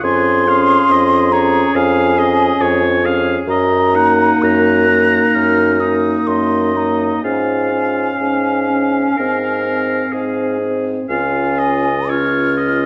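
A mellow, airy concert flute with vibrato carries the tender, lyrical melody of this slow, rubato romantic movement for wind quintet in Db major, its clear oboe second line, bright clarinet in the background, lightly vibrato French horn and up-front bassoon bass all heard through a wet recital hall reverb in a dark, warm production in this 12.9-second excerpt cut from a longer piece.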